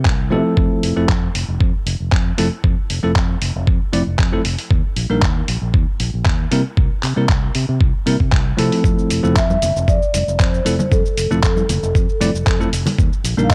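A straight 4/4 nu-disco groove at 116 BPM sets a sunny, feel-good mood in F major. The gritty, compressed sampler-style kit with handclaps, hi-hat and shaker sits beside a thumpy electronic kick that stays up front, both carrying a cassette-tape grain. A punchy fingered electric bass runs underneath from the start, while a bell-like, clean tine electric piano plays the chords with a sidechain pumping and tape colour, moving through Fmaj7, Eb5, C7 and back to Fmaj7 before an Ebmaj7 near the end. Around 9.2 seconds, bright congas played with soft hands slip into the background, and at 9.4 seconds a mellow vibraphone with soft mallets takes the melody, its metallic, ringing, airy tone carrying a medium motor vibrato and tape echo. The whole short cut has the homespun feel of a cassette recording wrapped in digital ambience.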